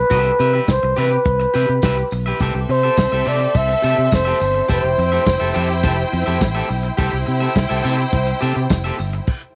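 Disco with a sultry, danceable mood, cut from a longer piece and moving in a straight 4/4 groove. A breathy, mellow flugelhorn carries the melody up front, close-miked and jazz-styled with scooped notes and a tape echo, until it stops at 5.8 seconds. Beneath it, a slightly broken-up, twangy electric guitar plays picked accompaniment, while a round, dark fingered bass sits prominently and a muffled, lo-fi soul drum kit with a tight kick, medium-tuned snare and dark cymbals drives the beat. A jingly tambourine glints in the background. At 2.4 seconds a lush, focused symphonic string section enters from a distance with bowed vibrato as a second line, over chords moving from Cmaj7 to C6 and Fmaj9. The mix sits in light studio reverb.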